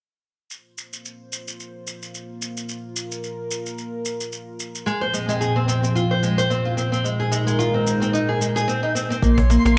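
This organic downtempo excerpt moves at 110 BPM in 4/4 with a gentle 16th-note swing. It opens at 0.5 s with an up-front electronic shaker, gritty with overdrive and layered with the sound of a small room. A smooth, detuned sawtooth pad soon settles in, dark and chorused, with a slow attack and sidechain pumping. Its sustained chords move from Fm/Bb to Ab/Bb, setting a mystical, earthy mood. At 4.9 s a small, fingerpicked nylon-string guitar enters with arpeggios touched by subtle chorus and delay. From 9.2 s the harmony lands on Bbm as a round sine sub bass with sidechain pumping arrives, along with a deep, overdriven kick in the background, a twinkling granular shimmer high above, and a woody, close cajon. A moderate plate reverb and bright 1980s-style digital production frame the piece.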